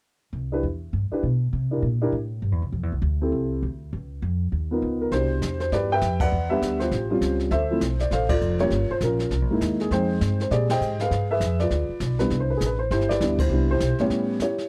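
Playful and swinging, this short stretch of a jazz piano trio moves briskly at 200 BPM in C major with a swing feel on the eighth notes. The upright bass starts almost at once, plucked and woody with steel strings, sitting up front and spanning a low range from F1 to C3. A dark, mellow upright piano carries the melody from just after the start, its boxy, slightly detuned tone and long sustain giving the harmony a hazy glow over rich chords like Db13, A7alt and Fm9. The brush drum kit joins at 5.1 seconds, bringing brushed snare, hi-hat, ride and a boomy kick with dark cymbals. The trio hits shared accents through the second half and drops into a brief break at 14.1 seconds on an A7 chord. The sound is a dry, close studio recording in a 1970s style, touched with light reverb.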